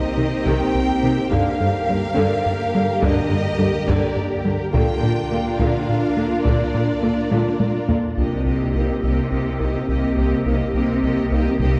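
In a straight 6/8 at 70 BPM counted in dotted quarters, this brooding, futuristic film-score excerpt in C minor blends orchestra and electronics, moving from Cm7 through Gm and Bb before returning to Cm7 at 8.2 seconds. A rubbery, hollow square bass drives a dark riff with a resonant filter pluck from the start, under a glassy, ethereal FM pad holding chords in the background, coloured by ensemble chorus and its own reverb. Two violin sections, one close and focused in a studio sound and one lush and symphonic, carry the melody and a second line with vibrato, while violas and cellos add smooth bowed accompaniment and bass further back. Solo taiko drums struck with hard sticks, compressed and saturated, enter at 1.3 seconds and play a fill just before 8.2 seconds, where a warm double bass section joins on a low C. A very quiet, mellow French horn section adds vintage-toned sustained chords from 8.7 seconds, and the whole mix sits back in a reverberant concert hall with a softened top end.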